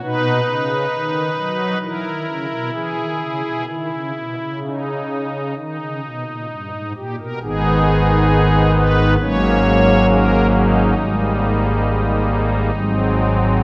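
Classical chorale-style music for solo pipe organ, solemn and grave, drawn from a longer piece and moving with uneven, rubato beats in 4/4. The organ sounds on string and celeste stops, shimmering and soft in a romantic voicing that sits up front, spanning from G#1 up to C#5 as the harmony passes from B and E through a rootless Badd9 to D#, then turns toward G#m over a held G# bass at 7.4 seconds and closes on G#7. A wet church reverb with a 2.4-second decay surrounds the instrument, recorded in a church or concert hall.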